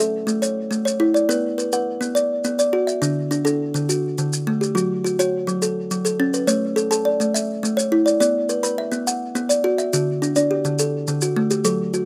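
A rolling 12/8 pulse at 139 BPM (dotted quarters) drives this hypnotic, rippling piece of southern African traditional music, built as an mbira-style interlocking cycle in A mixolydian and tuned to A4 = 436 Hz. An up-front kalimba, woody and bright with a thumbnail pluck on a solid board, spins short arpeggios from D3 to B5 through A, Bm, D and F#m, while grainy, close maracas join at 0.3 s. Recorded outdoors with a dry, roomless sound, the passage is cut from a longer piece, moving into a second section at 6.5 s that returns to A, Bm and D.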